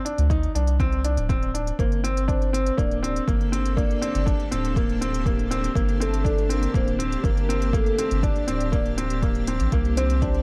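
Darkly produced with a light reverb, this cinematic, moving piano-and-strings electronica cut in G minor at 121 BPM opens on a clear, woody upright piano riff touched with digital delay, an overdriven electronic hi-hat, a punchy kick and a round, deep analog bass pumping under sidechain, before a velvety synth lead with chorus and tremolo enters at 1.8 s and a blurred, evolving granular cloud pad arrives at 3.0 s, all moving from Csus2/D through Gmadd9 to Cmadd9.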